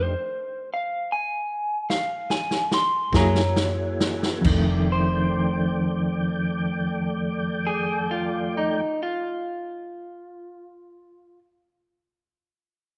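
A slightly broken-up, lo-fi electric guitar through a small old amp plays a second line up front in this gritty, laid-back slow blues fragment in 12/8 at 44-53 BPM, soloing as the tempo slows over the first 4.5 seconds. It is backed by smooth tonewheel organ chords with chorus vibrato, key click and a slow rotary speaker, a dark, round, foam-muted fingered bass, a punchy big-band drum kit that enters with a fill at 1.9 seconds, and a clean, hollow-body semi-hollow guitar with tremolo that joins at 3.1 seconds. The parts are set in light small-room reverb over F13 and Gb9 chords in F mixolydian.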